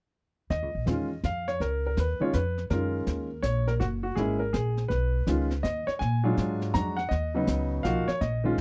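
A smoky, swinging jazz piano trio in Eb minor opens at 0.5 s, with baby grand piano, upright bass and brushed drum kit entering together at a brisk 164 BPM in 3/4, the eighth notes swung. The piano carries the melody from Db3 to Bb5 with a natural, short-sustained tone placed up front. The pizzicato upright bass sits equally close, woody and thumpy on steel strings, moving between Gb1 and Bb2. Brushes on a high-tuned snare, hi-hat and a boomy kick sit a little further back, with a small-room acoustic character. The harmony moves through Ebsus2, Dbadd9, Gb69, Badd9 and Bb7b13 to Ebm9 in a dry, close 1970s-style studio sound, and this excerpt from a longer piece stops at 8.6 s.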